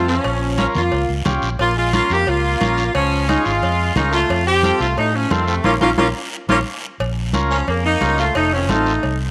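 A bright, tightly knit saxophone section opens this fiery, danceable cumbia at 178 BPM in Bb dorian, carrying the melody up front in a close-miked jazz style with light vibrato. Entering with it are a punchy, brilliant trombone playing a forceful second line from the background, a buzzy vintage combo organ supplying clean accompaniment with its own vibrato, and a round, amped fingered electric bass sitting up front. Within the first fraction of a second the percussion fills in: a raspy, dry guiro, ringing metal-shell cowbell and timbales, and damped, thin-skinned congas played with soft hands, all kept close, with the cowbell, timbales and congas set in the background. The harmony moves from Bbm through Db and F and back to Bbm, and the band hits an accent from 5.6 s, capped by a drum fill that launches a new section at 7.0 s, which ends on an F7. A moderate echo chamber reverb gives the whole mix a sense of space in this short excerpt cut from a longer piece.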